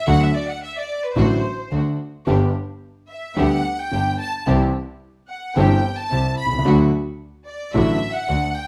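A rubato 4/4 pulse at 110 BPM drives this dramatic, sultry tango, cut from a longer piece and moving through D, G, C and back to D. A focused, smooth-topped studio violin section with vibrato carries a featured second line from 0.0 to 8.7 seconds over an up-front, warm concert grand piano accompaniment with deep bass and short sustain, while a reedy, gut-string chamber section adds period-style bowed stabs. A single biting, earthy bowed double bass with light vibrato anchors the low end, and the ensemble sits in a moderate large studio reverb.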